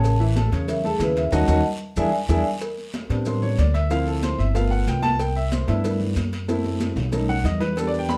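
Upright bass anchors this fiery, driving Afro-Cuban jazz excerpt, woody and up front in its pizzicato low register, while soft-mallet vibraphone with plate reverb rings out a mellow, metallic melody that stops at 2.4 seconds, amid a band accent and a drum fill. From 2.6 seconds the open, long-sustaining baby grand piano takes a solo over rich minor-leaning jazz harmony, pushed along by bright, high-tuned congas in a distant large room, a round low-tuned cowbell, a raspy guiro and grainy maracas. The production is dark and warm, with a second fill arriving at 6.5 seconds.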